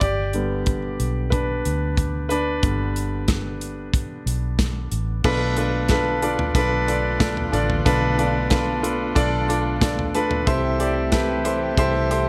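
A clear, intimate concert grand piano anchors this earnest, dramatic piano-driven pop fragment, sitting up front with a polished tone, deep bass, long sustain and audible action noise, and it carries a featured solo passage through the first 5.2 seconds. Beneath it, a vintage muted fingered electric bass plays dark, round, foam-muted low notes, while a modern acoustic drum kit adds a punchy kick, a medium-tuned snare, hi-hat, toms and crash cymbal in a mid-forward studio-room sound. At 5.2 seconds a very quiet string section enters with sustained, bowed ensemble chords, lush and woody with vibrato. The harmony moves from G to Bm7b5 at that same moment, then to Am7 at 10.5 seconds, in a straight 4/4 feel. A moderate large studio reverb, blended with a small room reverb, gives the mix space and depth.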